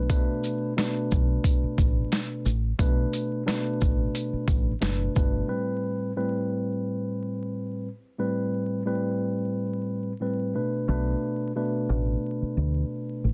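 A mellow tine electric piano and a deep, round fingered electric bass open this boom-bap hip-hop fragment at 89 BPM, joined almost at once by a gritty, sampler-style drum kit with a thumpy kick, medium-tuned snare, hi-hat and shaker, all riding a 16th-note swing in 4/4. The mood is tough yet reflective, set in A minor, with the chords moving from Bm7 to Am9 and back to Bm7. The electric piano stays clean and up front across the whole clip, its tone given a cassette-tape colour and filtered at both ends. The compressed, pitched-down drums and the dark, foam-muted bass drop out around 5.4 seconds, leaving the piano alone until the bass returns at 10.9 seconds. A light reverb, vinyl crackle and a dense, heavily limited modern master frame the sound, and the piece is cut from a longer work.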